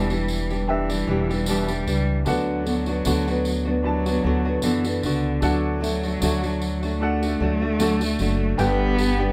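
A fingerpicked nylon-string guitar sits up front in this carefree, heartfelt slice of acoustic pop, its dark, classical tone marked by the occasional finger squeak. Beside it, a pizzicato upright bass on gut strings lends a woody, thumpy low end, while a single bowed cello carries a second line with focused tone, vibrato and a smooth top. A clear, boxy upright piano fills in the accompaniment from the background, and a jingly tambourine enters at 0.1 seconds, sounding distant as if in a large room. The groove moves at 76 BPM in 4/4 with a gentle swing on the sixteenths, in D major, passing through Em7, Bm/D, D and G. Light reverb gives the ensemble a soft sense of space across this short 9.3-second fragment of a longer piece.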